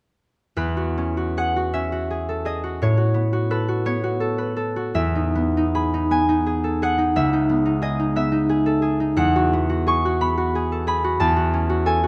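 In 6/8 with free, rubato timing at roughly 49-61 BPM, this peaceful, dreamy classical piece in E major is carried by a solo concert harp, fingerpicked and up front, its mellow, ringing tone spanning C#2 to C#6 from 0.6 to 12.1 seconds. The harmony drifts through lush colours such as E69, A69, Emaj7 and C#m9 before settling on F#m7/E at 11.2 seconds. Close, detailed miking captures the harp inside a moderate concert hall reverb, and the passage is cut from a longer piece.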